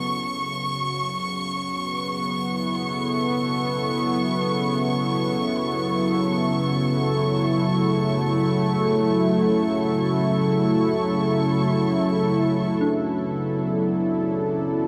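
Reflective and melancholic, this ambient excerpt rests on a mellow, chorused analog pad that holds smooth, sustained chords up front, joined by an intimate, lightly vibrato sul tasto chamber violin section until 12.8 seconds, when the harmony shifts from F#m to Bm7 and a very quiet, breathy flute-like synth lead carries a brief melody over soft, pure FM bell arpeggios, set within a huge, wet reverb.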